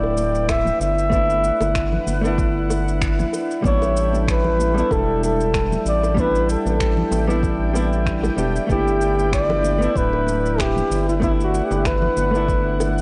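A worn, warbling cassette-tape sound colors this short sunset chillout excerpt, with light reverb, a gentle pitch drift and a muffled top end. It moves at 95 BPM in 4/4 with a light sixteenth-note swing in G major, carrying a warm, smooth mood as the harmony drifts from G6 to A7sus4 at 3.6 seconds and back to G6 at 8.7 seconds. A breathy, close-miked flugelhorn carries the melody in a mellow jazz style with scooped notes and tape echo. Beneath it, a dark, clean hollow-body jazz guitar plays fingered, compressed accompaniment, also with tape echo, while a lush, detuned unison pad holds thick, vintage sustained chords through a chorus effect. A round analog bass sits up front with a deep, mellow tone, overdriven electronic shaker and finger snaps enter at 0.2 seconds, and an overdriven electronic kick joins at 0.5 seconds, with bright bongos and congas played by hard hands tucked in the background.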